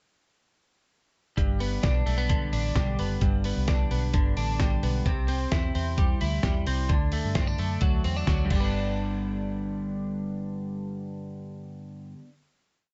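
A straight 4/4 dance-floor indie beat with off-beat open hats, played from 1.4 to 8.6 s on a gritty, compressed sampler-style drum kit with a thumpy kick and fat snare, drives this youthful, nostalgic jangly indie pop piece, while a foam-muted, round, punchy fingered electric bass carries a melodic line and an up-front, clean twelve-string electric guitar with analog chorus rolls through fingerpicked arpeggios over G, C and D. Both ring on into a final hit that closes the section at 12.4 s, all set in a dark production with light reverb.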